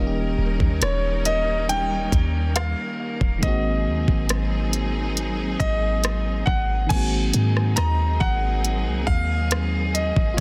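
A dense, heavily limited modern mix with light reverb frames this short cut from a longer contemporary R&B piece, moving slowly at 69 BPM in a straight 4/4 with a longing, moody air. A clear, intimate grand piano carries the melody high in its range, its natural action noise audible and a delay trailing its notes. Beneath it, a vintage FM electric piano adds glassy, bell-like chords with a warbling chorus and a faint noise layer, while a distant but focused studio string section holds lush, bowed sustained chords with vibrato. A deep, boomy 808-style sine bass with a clean, mellow decay underpins everything from the start, and from 0.6 s a produced electronic drum kit sits up front with a knocking kick, smooth hi-hats, rim clicks and crash cymbal. The harmony moves from Eb7 to Ab9, and at 7.8 s a very quiet, crystalline wavetable pluck glints briefly on a single high note, its detuned digital tone shaped by a filter sweep and chorus.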